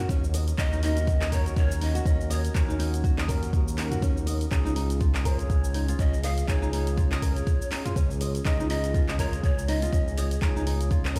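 Afro house at 122 BPM with a lightly swung, spiritual and hypnotic pulse, this 11.2-second excerpt pairs dark fingerpicked flamenco guitar arpeggios and gritty, barky overdriven tine electric piano stabs, both pumping under sidechain and trailed by delay, with a smooth, up-front synth bass, a deep electronic kick and a produced deep house kit of cabasa, handclaps, hi-hat and toms, while breathy, hollow cane pan pipes enter at 0.6 seconds with a chiffy, vibrato-laden melody over an Ebm7 that moves to Db at 4.5 seconds, all heard through a stone room's reverb as if played on a big sound system in a bare space.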